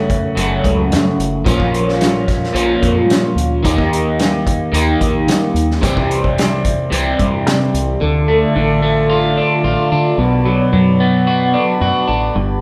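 An up-front electric guitar on the edge of break-up carries the riff in this short, trippy and dark psychedelic rock cut from a longer piece, its picked, slightly broken-up tone colored by a phaser. Beneath it, a deep dub fingered electric bass sits round and foam-muted, giving a dark, rounded low end. A vintage drum kit, also up front, keeps a straight 4/4 with a punchy kick, a medium-tuned snare and hi-hat, its smooth, rolled-off top sounding warm and dark; the drums stop at 7.9 seconds. At 8.0 seconds a pedal harmonium enters with sustained, reedy, breathing chords for the closing stretch. The harmony moves through F#m, Bbm, Eb and C before shifting to Dm and Bm. The band plays live in one room, wrapped in a wet, large studio reverb that lends the whole a hazy, spacious feel.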